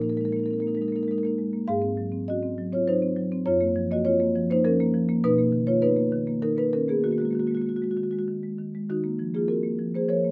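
A solo marimba played with soft mallets, its padauk bars sounding woody, round and mellow up front, carries this hypnotic, reflective contemporary classical excerpt in Eb minor at 100 BPM in 3/4, tuned to A4 = 435 Hz, moving through chords from Bb7sus4 to Gbmaj7 and Bmaj7 before settling on Ebmadd11 and, at 8.9 seconds, Ebmadd9, all in light reverb.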